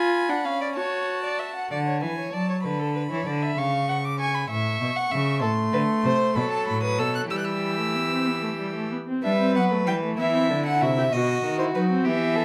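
A moderate large-studio reverb surrounds this joyful, lively baroque-style fugue for string quartet, cut from a longer piece, moving at 64 BPM in a straight 6/8 and settling into E minor from 5.4 s. Two period-style violins with gut-string, reedy tone play throughout, the up-front first carrying the melody with light vibrato while the second weaves a supporting line. A distant, rich viola accompanies, pausing from 1.7 s until 5.4 s, while an up-front cello with light vibrato enters on the bass at 1.7 s.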